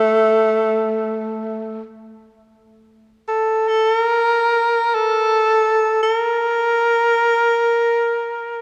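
A wet church reverb with a 3.0-second decay surrounds this short, austere passage of Japanese traditional chamber music, which unfolds calmly in free time. A lone tenor saxophone sits up front for the full 8.6 seconds, moving between A3 and Bb4 with a warm, breathy subtone, light vibrato and scooped notes. Its attack is punchy, its top end smooth, and its pop-style phrasing lends this fragment of a longer piece a quiet, measured calm.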